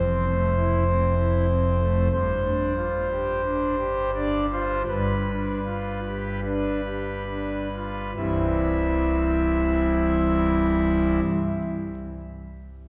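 A thick, up-front pipe organ sound blooms into a wet church reverb that hangs for 3.4 seconds, with a faint vinyl crackle riding beneath. This classical, chorale-style excerpt in C major moves at a slow 34-51 BPM in a straight 4/4, and its mood is majestic and reverent. The pipe organ plays alone on its foundation stops, spanning a broad range from C1 to E5 with a romantic voicing that feels full and warm. The harmony rests on Fmaj7, shifts to G7sus4 at 2.1 seconds, and the tempo slows through the opening section before arriving on a C chord at 8.2 seconds. The organ falls silent at 11.2 seconds, leaving the church reverb to ring through the excerpt's closing seconds.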